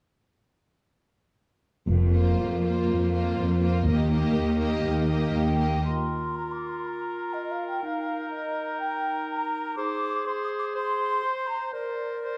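An up-front cello section anchors this heroic, adventurous film-score excerpt at 122 BPM in 4/4, entering at 1.9 s alongside lush double basses and a distant, roomy French horn section holding sustained chords. Bowed violins carry a smooth melody above a clear second violin line and a focused viola accompaniment over Fsus4 and Eb. From 5.3 s a hollow, airy flute group takes up a second line, and from 5.9 s a soft-toned cor anglais and a clarinet add their own lines as the harmony moves through Ab to Bbadd9, all set in a wet recital-hall reverb with a dark production.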